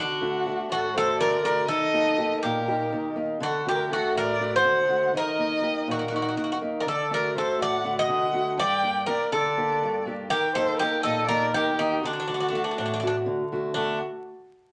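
Greek folk in a straight 7/8 at 244 BPM counted in eighths, this intense, dramatic excerpt in D phrygian dominant puts a bright, metallic bouzouki up front on the melody with its double strings, joined by a close, expressive bowed violin second line full of vibrato and portamento and a picked archtop guitar whose finger squeaks sit forward in the accompaniment, all moving between D and Eb with a turn to Gm, bathed in a wet club reverb and vinyl crackle.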